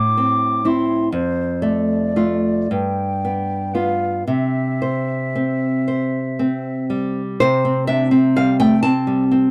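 In a slow, rubato 6/8 lilt of about 36-44 BPM counted in dotted quarters, this lyrical romantic duo in C major, cut from a longer piece, pairs a mellow, airy, distant concert flute singing the melody between C5 and D6 until 6.9 s with an up-front, fingerpicked nylon-string guitar of small, warm acoustic tone that accompanies through Am, Dm/F, G7 and C and carries on alone until 9.5 s, in a dry, close 1970s-style studio sound touched with light reverb.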